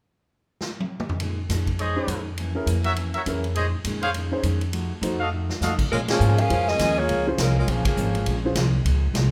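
A clear, close-miked saxophone section with vibrato carries the melody near the end of this short big-band swing excerpt, arriving at 5.9 seconds over a brassy, sultry backdrop in a minor key. The drum kit opens with a fill at 0.6 seconds, its punchy kick and medium-tuned snare ringing naturally in a big room alongside hi-hat, ride, crash and toms, with another fill at 5.3 seconds. A woody, up-front pizzicato upright bass and a picked steel-string acoustic guitar with an auditorium sound settle in beneath minor eleventh and dominant chords, while a warm trumpet section with a smooth top punctuates the middle stretch with stabs. An intimate, vintage concert grand, its action noise audible, adds smooth accompaniment, and full-band accents land at 6.1 and 7.8 seconds. Light reverb gives the swinging ensemble a sense of shared space.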